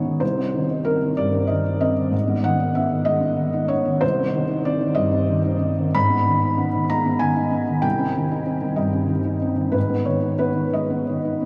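Neoclassical minimalist piano in a wistful, intimate mood, played with rubato at 63 BPM in 6/8, this short cut from a longer piece features a solo felt-muted upright piano that sounds soft, mellow and up front, ranging from C2 to B5. The harmony alternates between Cm and G#m throughout the 11.5 seconds. The piano sits in a vast, echoing space with a huge, wet ambient reverb, and a faint mains hum lingers beneath it.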